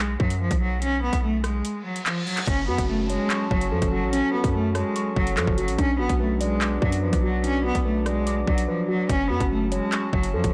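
A half-time drill groove in 4/4 drives this menacing, ominous hip hop excerpt, with an overdriven kit of hard-clipped kick, metallic hi-hats, handclaps and rim clicks up front beside a punchy, heavy 808-style bass, while a single bowed cello carries a rich, smooth melody with vibrato from the opening. After a reverse cymbal and downlifter arrive at 1.8 seconds, muted, dark felt-like synth keys with chorus and a warbling, nostalgic tape-like pad of sustained chords in the background enter at 2.5 seconds, and the drums drop out briefly at 8.7 seconds. The dry recording sounds blown-out and loud.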